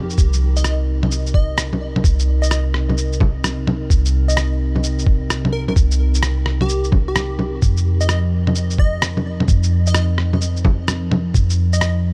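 A muffled, thumpy electronic kick sits up front in this melancholic, nocturnal future garage excerpt at 129 BPM in C minor, swung on the 16ths, with pitched-down shaker, rim click and bongos sharing its compressed, tape-warm sampler character and studio reverb. A deep, round 808-style bass with tube saturation anchors a warbling, nostalgic pad that drifts through chorus and its own reverb while pumping to the sidechain, moving from Cm7 to F7sus4 at 7.6 seconds. Above it, a punchy, catchy detuned unison lead carries the melody with vibrato, a moving notch filter and tape echo, sitting lowest in the mix.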